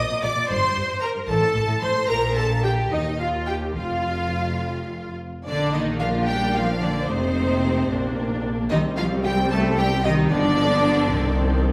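A full string orchestra starts together in a spirited, lively classical-period movement in Bb major, a quick 6/8 at 74 BPM with a rubato feel, as an intense, clear violin section carries the melody up front over a rich, focused second violin line in the background, bowed viola accompaniment, lightly vibrato cellos and a smooth, lush double bass section, the ensemble ringing in the wet reverb of a recital hall.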